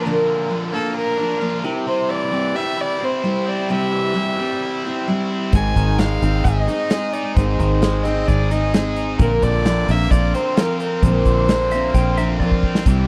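A rich, earthy fiddle carries the melody from the first moment, bowed by a single player with light vibrato and a smooth top, over a full-bodied picked steel-string acoustic guitar and a biting, bright overdriven electric guitar that plays a double-tracked riff. The feel is folk rock shading into heartland rock, with an open-road mood, a straight 4/4 pulse at 131 BPM, and tuning set to A4 = 437 Hz. At 5.5 seconds a dark, round fingered bass with a foam-muted, up-front tone enters alongside a natural country drum kit of hi-hat, tight kick and medium-tuned snare, airy and polished in a small room. Near the close, at 11.7 seconds, a clean, compressed lap steel guitar adds a brief slide line with volume swells, and a drum fill arrives at 12.4 seconds. The harmony moves through Bb, C, Ab and Bbadd9. The sound is dry and close, like a 1970s studio recording with little reverb, and this excerpt is cut from a longer piece.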